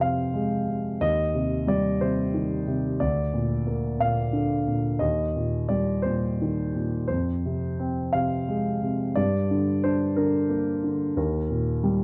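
A concert grand piano, up front with a deep bass, carries this melancholic, reflective classical solo across its whole 12 seconds, ranging from D2 to F5. The lyrical line moves in a rubato 6/8 at 60 BPM counted in dotted quarters, in F dorian with the tuning at A4 = 439 Hz, and its harmony wanders from Fm through Cm/Eb, Bb/D and Eb before returning to Fm and passing on to Gm and Eb. Light reverb and a dark, warm production frame this passage, which is cut from a longer piece.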